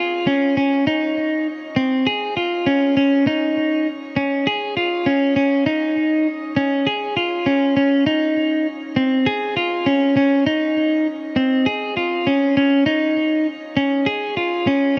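Dream pop with a haunting, hazy mood, this short cut from a longer piece features a lone clean electric guitar playing throughout its 15 seconds in a straight 4/4. The guitar sits up front, bright, picked and twangy with a compressed edge, colored by subtle chorus and digital delay. A moderate shimmer reverb and a dark, warm production wrap the sound in a misty glow.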